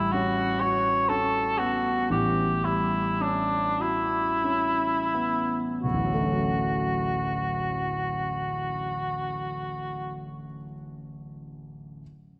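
Dreamy and pastoral, this impressionist classical duo drifts in a rubato 6/8 at roughly 28-43 BPM in dotted quarters. The cor anglais carries the melody in D major with a mellow, vibrato-laden tone, while the warm, open grand piano accompanies from deep bass up to its middle register. The music slows over an opening A13 harmony before settling onto Dmaj7 at 5.8 seconds, all bathed in a wet concert-hall reverb; the cor anglais falls silent at 10.2 seconds, leaving the piano to ring on until this fragment of a longer piece ends at 12.0 seconds.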